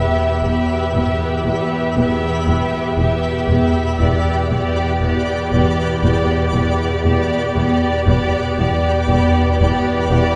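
A clear, intense violin section carries a vibrato melody between D5 and E5 in this eerie, ominous cinematic excerpt at 59 BPM, tuned to A4 = 435 Hz and moving from Em to G/E at 4.0 s, over a rich, focused second violin line, smooth background violas, close cellos, a clear double bass section entering at 0.4 s, a tense sawtooth-edged bowed-like drone on E2, a twinkling granular texture with octave-up shimmer, a barely audible felt-muted upright piano, and a very quiet high violin layer that stops at 3.5 s, all heard from further back in a wet scoring-stage reverb.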